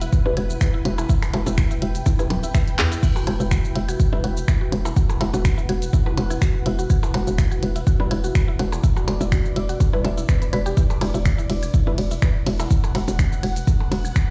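A swung 124 BPM pulse in 4/4 drives this hypnotic, sparse minimal techno excerpt in E minor, where an overdriven, punchy analog kick sits up front beside a hollow, bouncy FM bass with tube saturation, while a clicky minimal drum kit of hi-hat, ride, crash, snaps, handclaps and shaker, percussion blips and claves with delay, a woody mallet-like synth pluck riff, muted nasal dub chord stabs with phaser and 12-bit grit, and a cloudy granular pad fill out a bare, reverberant room, with a drum fill at 2.8 seconds.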